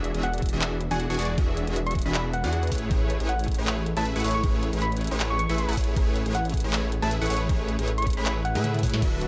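Bright and euphoric, this future bass passage, cut from a longer piece, moves at a half-time feel with a light swing on the sixteenths, shifting from E7 to Amaj7 at 2.7 seconds. A punchy, detuned supersaw stab carries the riff up front, pumping against the sidechain, while a thick, lush saw bass with chorus sits beneath it, mellow but forward and pumping too. A round, keys-like FM lead enters at 0.2 seconds with a gentle melody in a high register, coloured by chorus, vibrato, digital delay and sidechain pumping. Very quiet in the background, a dark, soft pluck traces arpeggios with a moving notch filter. A trap kit of sharp snare, bright hats, handclaps, toms and crash plays from the start, joined by a knocking electronic kick at 0.4 seconds, with a drum fill from 8.6 to 9.0 seconds. Light reverb gives the mix a touch of space.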